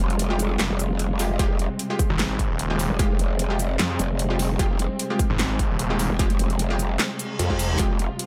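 Swung at 150 BPM in a half-time 4/4 feel, this menacing, aggressive heavy wobble dubstep excerpt in F minor pairs a wobbling, formant-filtered growl bass with a snarling, detuned sawtooth bass (0.6-6.1 s) up front, while a punchy electronic kick enters at 1.4 s beneath a big-room dance kit of huge snare, metallic hats, handclaps and shaker, bold orchestra-hit-like synth stabs ring with reverb and digital delay, a dark, woody string section sustains chords in the background, opening on Fmadd9, through 12-bit grit, sidechain pumping and a low-pass filter, and a reverse cymbal rises at 7.2 s inside a digital ambience.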